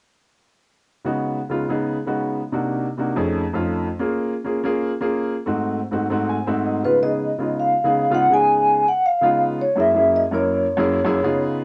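Sunny and sophisticated, this brief jazz excerpt moves at a brisk 164 BPM in a straight 4/4 and is centred in Db mixolydian. A warm baby grand piano carries the accompaniment from the start, its open tone and long sustain sitting up front as the harmony moves from Db9sus4 through Cm7b5, F7alt, Bbm7 and Ab7b9. The piano slips in a short fill just before the vibraphone enters at 6.8 seconds. There the harmony settles onto Db9 and later Gb9. Played with soft mallets, the vibraphone takes the melody with a metallic, ringing yet mellow and airy sound, coloured by fast motor vibrato and placed prominently in the mix. A moderate studio reverb and the gentle character of a home cassette recording give the pair an intimate, slightly vintage glow.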